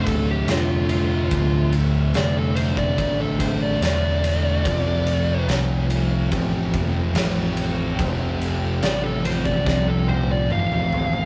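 Stoner and doom metal at a slow 72 BPM in 4/4, this brooding, heavy passage is cut from a longer piece and moves from D minor to F at 4.7 seconds. A fuzz lead guitar carries the melody as a solo throughout, its dark, distorted tone trailed by tape echo. Beneath it, two thick fuzz guitars play the riff in a low register, one sitting very quietly and the other in the background with added distortion, while an overdriven picked bass gives a bright, growly, punchy bottom end. An oversized low-tuned drum kit comes in at 0.1 seconds with a boomy kick, medium-tuned snare, dark cymbals on the ride and toms in a big, pumping room, saturated and gritty, and closes with a fill from 9.7 seconds. A very quiet bowed-like drone holds sustained string-like chords, tense and detuned, with a slow attack, vibrato and its own reverb. The whole thing has the rough feel of a rehearsal-room recording with light reverb.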